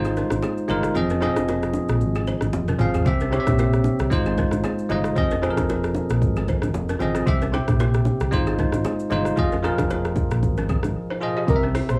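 A bright, bell-like tine electric piano sits up front with a cassette-tape tint, carrying the chords of this smooth, mellow afrobeats excerpt over a round, punchy fingered electric bass and an electronic afro-pop drum kit with a deep kick, metallic hats, rim clicks, shaker and toms, plus a drum fill at 2.5 seconds. A quieter woody, buzzing balafon riff played with hard rubber mallets runs through analog delay, while close, dry bongos and congas sit in the background. At 11.5 seconds a soft, breathy flute-like synth lead with chorus and vibrato slips in just as the clip ends, everything set in a small, homey room sound.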